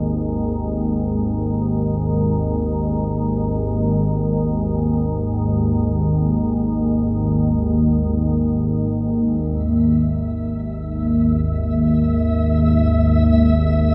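A cavernous, cathedral-like reverb with a long tail surrounds this ominous, vast dark ambient drone, cut from a longer piece. An up-front, organ-like drone of detuned sine and triangle tones, coloured by ring modulation and ensemble chorus, holds low and calm from the start and takes on a filter sweep from 9.2 seconds. At 10.0 seconds a faint, flickering granular texture fades in high above it, grainy and detuned, and sustains to the close at 13.9 seconds.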